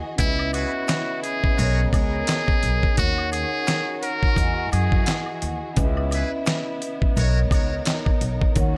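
Boom-bap hip-hop at 86 BPM with a swung sixteenth feel, this gritty, reflective excerpt rides a compressed, thumpy sampler-style drum kit with a fat snare, handclaps and hi-hat, up front beside a woody, growly pizzicato upright bass, while an egg shaker and woodblock sit in the background. A brilliant, buzzy trumpet in a metal mute carries a jazz-style solo melody from 0.2 to 5.2 s, with light vibrato, scooped notes and delay, as a close-miked muted trumpet section adds pop-style stabs. Mellow soft-mallet vibraphone accompanies as lush, smooth-topped studio strings hold chords through C#m9, Bmaj9, D#m7 and Emaj9 in a small room ambience.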